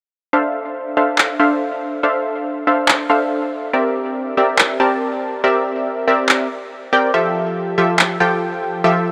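A punchy supersaw stab opens this bittersweet, dreamy future bass excerpt at 0.3 s, carrying the riff with a detuned unison sawtooth tone, a fast attack and sustained notes shaped by a low-pass filter sweep and tape echo. Electronic handclaps arrive at 1.2 s, layered and overdriven, sitting up front with a produced edge. The groove moves in a half-time feel with a light swing on the sixteenths, giving the pulse a relaxed, floating sway. Underneath, the harmony drifts from Dm9 through C7 to Fmaj7, lending the riff its wistful colour. A huge ambient reverb with a long tail surrounds the mix, and the claps drop out at 8.1 s while the stab rings on to the end.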